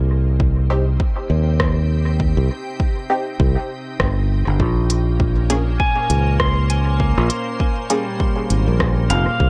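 A hazy, meditative ambient dub passage cut from a longer piece, with light reverb around a soft, organ-like pad that fades in from the start, holding sustained chords with a pure, detuned shimmer and ensemble chorus. At 100 BPM in 4/4 with a gentle swing on the sixteenths, it sits in Bb dorian, moving from Cm to Bbm7 at 4.6 seconds. A fingered electric bass plays up front throughout, bright and growly, while an overdriven electronic kick with a deep, layered thump arrives at 0.4 seconds. A muted, filtered dub chord stab with a sawtooth pluck drifts through phaser, lush chorus and dub echo, joined by an organic electronic kit of smooth hi-hats and rim clicks with a tape-warm, roomy tone and its own dub echo. At 5.8 seconds a clean, twangy pedal steel guitar enters with arpeggios, its slide and volume swells trailing into tape echo.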